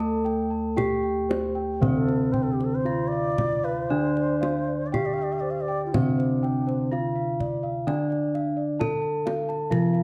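Javanese gamelan in D slendro, ceremonial and serene at 57-67 BPM in a straight 4/4, in which a dry, up-front bronze metallophone carries the ringing wooden-mallet melody over a boxy-sounding lower metallophone accompaniment and soft, dark arpeggios from a higher metallophone struck with padded disc mallets, while round, beating bossed gongs hold the bass, a tight kendang is played with hard hands, and a pure bamboo bansuri with vibrato and a crisp attack adds a second line from 1.9 to 7.4 seconds, all set in a moderate recital-hall reverb with a dark production in this short excerpt from a longer piece.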